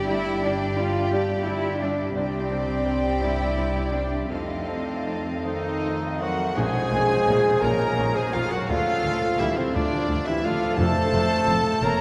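A dark, intimate violin section carries the melody of this sorrowful, bittersweet film-score passage in a rubato 6/8, playing very quietly with a soft, sul tasto tone. Around it, a richer chamber violin section, a pure, hollow flute and a clear clarinet weave second lines. A bright, brilliant piano with deep bass and short sustain supplies accompaniment alongside floating violas, while a tight French horn section holds sustained chords in the background. Warm cellos and shadowy double basses anchor the bottom, with a very quiet cymbal swell and tam-tam entering at 2.1 seconds and a cor anglais adding another second line from 5.4 seconds. The harmony moves from Csus2 and F7 through Bbmadd9 and Dm to a closing F, where soft, round timpani enter at 10.8 seconds, all within a long, wet cathedral reverb in this short cut from a longer piece.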